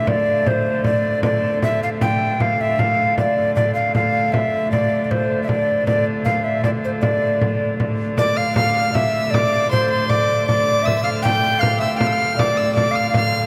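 A hollow, airy tenor recorder with a tongued chiff carries the melody from the start, over a clear, distant hurdy-gurdy drone and a small, bright frame drum played up front with soft hands, in this driving, mysterious medieval dance in D minor at 156 BPM in 3/4. At 8.2 seconds a rich, nasal fiddle with light vibrato joins on a second line as the opening section repeats. A wet cathedral reverb surrounds the ensemble, giving this short cut from a longer piece a long, echoing glow.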